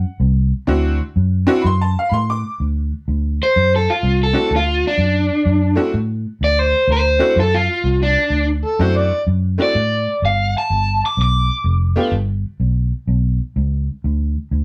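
An overdriven semi-hollow guitar carries the melody in this gritty, rollicking electric blues shuffle, its picked, hollow-body tone sitting up front from 3.4 seconds. Beneath it, a tack piano supplies metallic, jangly accompaniment with a bright, percussive vintage edge, while a foam-muted fingered electric bass gives a dark, round, amped bottom. At 8.7 seconds an amplified harmonica enters with a brief jazz-style solo phrase, full of vibrato, scooped notes and tongue slaps over a soft attack. The harmony rests on D9 before shifting to G7, and after the piano and guitar stop at 12.1 seconds the bass carries on alone. The band sounds like it is playing live together in one room, with a moderate studio ambience around this fragment of a longer piece.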